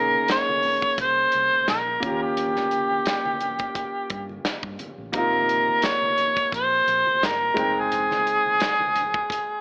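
A mellow harmonica with gentle vibrato opens this short cut from a smooth, lush 1970s-style soul piece, sitting up front with a vintage, pop-style voice as it carries the melody, joined at once by a clear, natural grand piano in accompaniment. Within the first second, a modern studio drum kit settles in with hi-hat, a punchy kick and a medium-tuned snare, its acoustic sound placed mid-forward in the mix. Low-tuned congas with a thick-skinned, distant tone sit in the background, alongside a dark, round, foam-muted electric bass that stops at 8.1 seconds. The groove has a relaxed sixteenth-note swing, and the harmony drifts through Bbm11, Eb7, Ab69 and Fm9, giving the passage a warm, easygoing glow. Light reverb and small-room ambience are set against an AM-radio coloring that lends the whole recording a narrow, nostalgic character.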